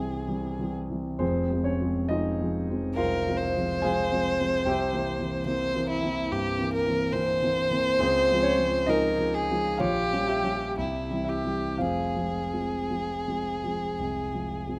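Captured close and in fine detail within a moderate recital-hall reverb, this melancholic, yearning romantic classical excerpt in F minor moves with rubato at roughly 53-75 BPM: a single bowed violin sings a smooth, even melody with vibrato up front, while a warm concert grand piano supplies accompaniment rich in deep bass, the two playing together from 0.0 to 14.8 seconds.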